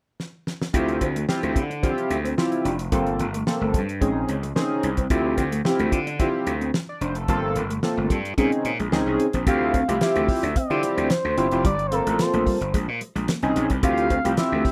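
A straight 4/4 groove at 110 BPM opens on a short drum fill from the damped, dry 70s kit with its fat snare and tight kick, setting up a danceable, late-night slice of early-eighties boogie funk in D minor. From 0.7 seconds a growly, overdriven slap bass and a glossy, chorused polysynth sit up front over a cycle of Dm11, Gm11 and Bbm11 chords, while a dark, clean electric guitar riff with tube saturation and ensemble chorus joins just after and stays in the background. At 9.5 seconds a smooth, nasal synth lead with vibrato, slapback echo and plate reverb takes the melody in this rough home-demo cut from a longer piece.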